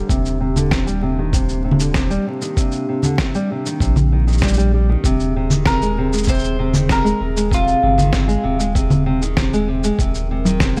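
Folktronica at 97 BPM in 4/4 with a straight feel, this short excerpt from a longer piece has a playful, warm mood. A fingerpicked nylon-string guitar sits up front with bright classical arpeggios, passed through a low-pass filter that sweeps across the whole passage and a tape echo. Behind it, a dark, detuned, warbling pad holds nostalgic lo-fi chords in the background, coloured by chorus, built-in reverb and 12-bit sampler grit, while a round sine sub bass with tube saturation anchors the low end. Sampler-style electronic drums, re-recorded in a small room, give a muffled, thumpy kick and a fat, compressed snare, with cabasa and congas up front. From 5.7 to 8.7 seconds a picked mandolin with double strings adds a short melody. The harmony moves from Cm9/Eb to Bb9sus4/Eb and settles on Cm7/Eb, all wrapped in light reverb and vinyl crackle.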